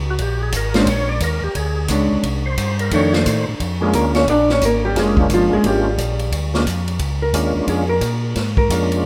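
Swinging at 176 BPM in 4/4, this bluesy soul jazz organ trio excerpt in Bb mixolydian rides on a big-band drum kit of hi-hat, ride, snare and punchy kick, while a round, up-front tonewheel organ carries the bass line through slow rotary speaker and chorus vibrato. A gritty, percussive overdriven organ takes the melody and solos for the first 3.6 seconds over changes moving from Bb7#9 through C5 and F6. A clean, fingered hollow-body electric guitar, which enters at 0.8 seconds, then takes over the solo, all set in a lush hall reverb within a rough home demo mix.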